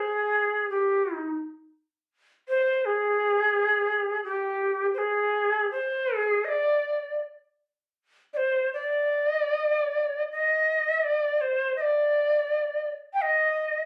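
A solo shakuhachi carries this austere, meditative Japanese traditional excerpt from 0.0 to 13.9 seconds, its breathy, reedy bamboo tone sitting up front with a crisp, chiffy attack and vibrato. The line moves freely in rubato with uneven beats around 81 BPM in 4/4, staying between G4 and G5. A light reverb gives the bright, phone-recorded sound a distant air.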